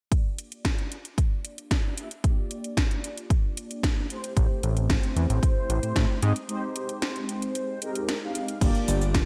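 Bright 1980s-style digital production with light reverb frames this sensual, cosmic nu-disco clip at 113 BPM in G dorian, where a punchy, up-front electronic kick and a house kit with cracking snare, metallic hats and gated reverb drive a straight 4/4 beneath round, dark synth brass coloured by chorus, phaser and digital delay, while a filter sweep runs through to 8.6 seconds, a fat, detuned sawtooth bass enters at 4.4 seconds, and a break arrives at 6.5 seconds over chords moving from Gm7 through Am7 and Abmaj7.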